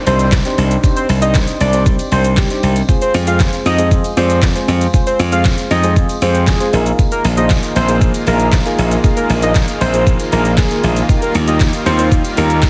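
A straight 4/4 dance-pop groove at 117 BPM drives this confident short excerpt, built on a smooth, produced R&B drum kit with a knocking kick, deep snare, metallic hi-hats, handclaps and shaker sitting up front. A very quiet, distant tambourine jingles in a large room behind it. A glassy slap bass, bright and punchy, sits just as close to the listener, while soft, round electric-piano-like synth keys with chorus fill out the accompaniment. A very faint electronic downlifter opens the clip and ends at 2.9 s. Over this, a fat analog lead carries the melody with a sawtooth-and-square tone, a sub octave, a filter sweep and vibrato. At 7.0 s a lush, airy supersaw pad of detuned sawtooth voices enters softly in the background. The lead, keys, bass and pad all pump against the kick, moving from Cmadd9 through Fm and Bb7sus4 to Ebadd9 under light reverb and a heavily compressed, radio-ready sheen.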